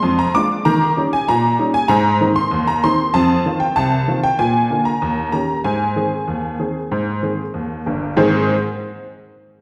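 Lively and cheerful, this ragtime excerpt moves at 96 BPM in a straight 2/4 in Ab major, tuned slightly sharp to A4 = 442 Hz. A detuned, jangly honky-tonk upright piano plays solo and up front from 0.0 to 8.5 seconds, reaching from G1 up to D6 over a Bb7 to Eb7 to Ab progression with a brief F5 turn, and a new passage begins at 8.2 seconds. A wet recital-hall reverb with a 1.6-second decay gives the bright, vintage piano the airy ring of a church or concert hall.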